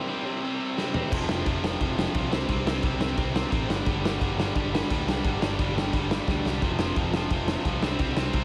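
Two electric guitars, one biting and overdriven and the other tight and distorted, open this energetic, rebellious punk rock fragment at 174 BPM with a picked riff on C5 before a gritty, up-front garage drum kit with a punchy kick crashes in on a fill at 0.8 seconds and a growly, amped electric bass joins at 1.1 seconds, driving through F5, C5 and G5 power chords in a stone room with light reverb, with a second drum fill at 6.3 seconds.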